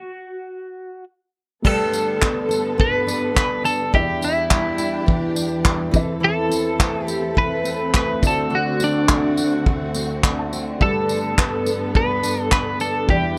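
Tender and wistful, this acoustic pop excerpt moves at 105 BPM with a light 16th-note swing, opening on a bright, twangy twelve-string electric guitar melody with tremolo that plays alone over a stop until 1.6 seconds. There the band enters under a Gadd9, Em7, Am/E and D7 progression: a full-bodied fingerpicked jumbo acoustic guitar, smooth bowed strings holding sustained chords, a very quiet woody upright piano, and an up-front brush kit with dark cymbals, a tight kick, tambourine and handclaps. Light reverb gives the clean, compressed lead a gentle space, and the drums drop out at 13.2 seconds just before the fragment ends.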